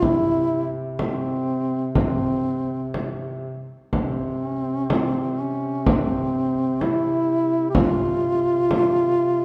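A dark, close-miked duduk carries the melody up front with vibrato, its folk-style line moving between C4 and G4 over a second, distant duduk that holds a low drone on C3 with light vibrato, soft attacks and scooped notes. This short cut from a longer Caucasian lament moves at a rubato 62 BPM in 4/4 and C major, its mood longing and solemn. A deep, large frame drum sounds from a big room and stops at 8.9 seconds, just before the duduks end at 9.4 seconds, all under light reverb.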